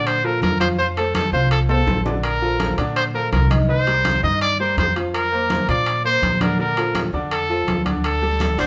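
A clear, punchy trumpet leads up front with scooped notes and a vintage, pop-style solo voice, sitting between A4 and Eb5 in this sunny, joyful salsa excerpt in Bb major. It moves at a brisk 165 BPM in straight 4/4, over chords that pass from Bbmaj7 through F, Cm7 and Fsus4 before landing on Dsus4. A bright upright piano with a brilliant, polished tone and long sustain fills in the accompaniment, while a dark, woody pizzicato upright bass on gut strings adds a thumpy low end. Thin-skinned congas, played with soft hands and heard from a distance in a large room, join with ringing, vintage metal-shell timbales, and a drum fill arrives at 1.7 seconds. A raspy guiro slips in quietly at 8.0 seconds as the band, playing live together in one room, carries on under moderate studio reverb until the cut.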